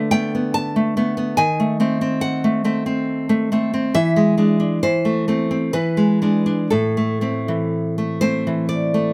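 In a rubato 3/4 that drifts between 59 and 72 BPM, this brief cut from a longer romantic piece in A minor, tuned to A4 = 442 Hz, features a solo nylon-string guitar, fingerpicked in classical style, sounding warm and up front across a range from A2 to A5 under light reverb, its passionate, melancholic phrasing moving from Bm7/D through D#dim7 and E7 to settle on A minor at 6.7 seconds.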